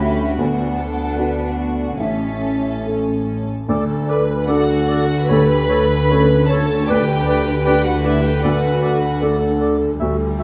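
A moderate scoring-stage reverb surrounds this moving, uplifting cinematic film cue for orchestra, cut from a longer piece and played with a rubato feel. A clear, floating violin section carries the melody over a smooth-topped second violin section, a rich viola section in the background, a felt-muted upright piano with an intimate, thin felt tone, and a dark bass of cello and double bass sections, while an airy, distant flute ensemble adds a line that stops at 2.9 seconds. From 3.7 seconds a mellow clarinet and oboe take up second lines, and the violins stop at 9.6 seconds.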